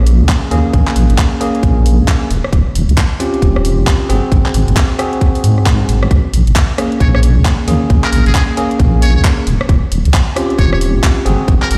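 UK garage two-step with a bouncy, late-night swing, where a deep, wobbling chorus-treated bass sits up front beside a tight overdriven electronic kick, under a gritty garage kit of handclaps, hi-hat and rim click, while bell-like tine electric piano stabs pass through a low-pass filter and delay over Bbm7, Eb13 and Ab7 chords, and a buzzy, thin metal-muted trumpet enters at 7.0 seconds with light vibrato, 12-bit sampler crunch and delay, all ringing in a bare stone room on a big sound system in this cut from a longer piece.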